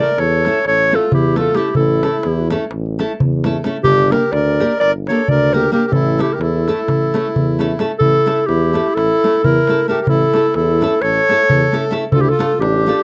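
Virtuosic and bittersweet, this Balkan wedding-band folk piece in 9/8 is cut from a longer work and puts a smooth-topped, classical-style clarinet up front on the melody, with a reedy, clear accordion beneath it on a second line. A fingerpicked nylon-string guitar with audible finger squeak supplies the accompaniment, while a distant, roomy tuba carries the bass and a close, dry clay-shell darbuka with natural skin keeps the percussion. The sound is that of a dry, close 1970s-style studio with light reverb, and the music moves into a new section at 8.0 seconds.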